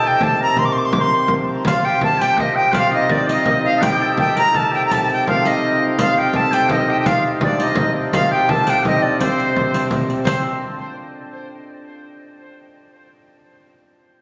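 Driving and mysterious, this medieval dance moves at 112 BPM in a straight 6/8, counted in dotted quarters, and sits in C dorian as a section cut from a longer piece. A pure, wooden alto recorder carries the melody up front with vibrato, a soft attack and lifted highs, its line touched by tape echo. Beneath it a clear shawm adds a second line in the background, with light vibrato, scooped notes and a vintage folk character. A shimmering, ringing hammered dulcimer plays another second line and carries on alone after the other parts stop, closing out at 12.8 seconds, while a reedy, breathing harmonium holds a mellow drone on C3. A deep, close frame drum struck with hard hands enters at 0.2 seconds, and a dry riq with dark jingles joins at 1.7 seconds. The whole is bathed in a wet scoring-stage reverb, yet it carries the dulled top of a phone recording made in the room.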